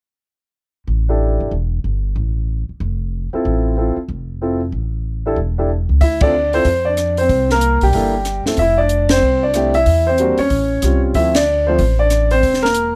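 Smoky and swinging, this brief jazz piano trio passage is cut from a longer piece and moves at a brisk, lilting swing in a minor key. An upright bass opens the passage at 0.9 seconds, plucked on gut strings with a woody, thumpy, dark tone that sits up front. A warm upright piano joins almost at once to carry the melody, its polished, present sound ringing with long sustain. At 6.0 seconds a compact cocktail drum kit enters as the music moves into a new section, adding hi-hat, kick, ride, rim clicks and snare, with dark cymbals, a high-tuned snare and a punchy kick that stays dry and tucked behind the other two. The trio hits shared accents along the way, and the harmony drifts through rich extended and altered chords before settling on an unresolved, tense close. Close, detailed microphones and very little reverb give the whole trio an intimate, in-the-room immediacy.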